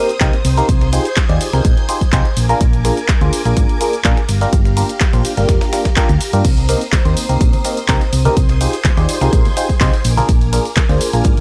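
Shimmering string-machine violins and a biting, phased FM electric piano riff open this soulful, energetic piano house excerpt, joined at once by a layered house kit of cabasa, handclaps, hi-hat, ride and crash, a punchy up-front electronic kick, a dark, round hollow-body electric bass that pumps with the sidechain like the strings and piano, and a very quiet, gritty sampler-style soul kit of hi-hat and snare, before bright, close tambourine and congas slip into the background at 6.4 s, the mix sounding dry and transformer-saturated over a Cm7, Fm9/C, Bb7, Gm7 progression.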